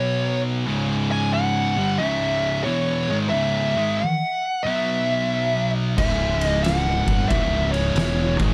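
A fuzz lead guitar, compressed and up front with analog delay, carries the melody in this ominous, heavy stoner and doom metal passage, cut from a longer piece and set at 90 BPM in 4/4 with swung eighths in C# minor. Beneath it, two thick fuzz guitars sit dark in the background, joined by a tight, bright, double-tracked distorted guitar, all playing low riffs as the harmony moves between B5 and C#m. At 6.0 seconds an overdriven fingered electric bass enters with a growly, amped tone, alongside an oversized low-tuned drum kit. The kit sounds gritty and up front in a stone room, with a boomy kick, a fat snare and shadowy crash and ride cymbals. Light reverb surrounds the mix until the passage ends at 8.5 seconds.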